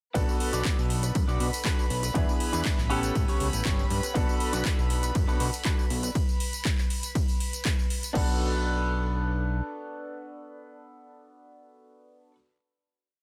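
Filtered disco house at 120 BPM in B minor, a short, complete piece with a groovy, sensual mood and a straight 4/4 pulse. A punchy, overdriven four-on-the-floor electronic kick sits up front, joined by a house kit of metallic hats, clap, tambourine, ride and crash with a programmed backbeat, both running through the drop until 8.3 seconds. A fat sawtooth analog bass with tube saturation plays a funky syncopated line, while a clear grand piano, treated with phaser and gritty 12-bit sampler color, adds held close-voiced chords with syncopated pushes, and a slightly broken-up, lo-fi electric guitar through a small old amp plays a funk chord rhythm. Above them a soft, floating violin section bowed sul tasto holds sustained high chords until 8.2 seconds. The harmony moves through Bm7, E7 and A9, with a chordless moment at 6.2 seconds, before the piece ends on a final Bm7 from 8.2 seconds, carried by piano and guitar, with bass lingering to 9.6 seconds. 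The sound is dry and close, with sidechain pumping on the piano, violins, guitar, bass and kit cymbals and percussion.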